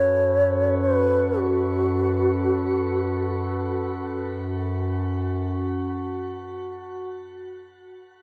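Bathed in a wet concert-hall reverb, this haunting, spacious passage of free-time world meditation music is cut from a longer piece. An airy, mellow low xiao carries the melody up front with vibrato and a crisp attack, its bamboo tone haloed by shimmer reverb and delay until it falls away at 3.7 seconds. Beneath it, a warbling, nostalgic tape-like pad holds a detuned, lo-fi drone with chorus, while a glassy, ethereal glass harmonica adds quiet beating texture through shimmer reverb, both sustaining to 7.1 seconds.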